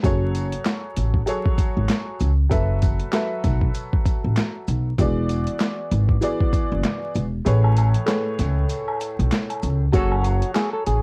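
Moody and tough, this boom-bap hip-hop excerpt rides a swung 97 BPM groove in F# minor, with a gritty, overdriven sampler-style drum kit of thumpy kick, snare, hi-hat and handclaps up front beside a woody pizzicato upright bass, while a worn, slightly detuned upright piano carries the chords from F#madd9 through B7sus4/F#, E7 and Amaj7. Maracas and woodblock sit distant in the background, and the kick drops out from 7.5 to 9.9 seconds before a dark, clean semi-hollow electric guitar melody and a brief punchy trumpet-section stab with analog delay arrive at 9.9 seconds. The whole thing has a dry, home-cassette feel with vinyl crackle, and the piano, drums, guitar and trumpets carry a tape-worn tint.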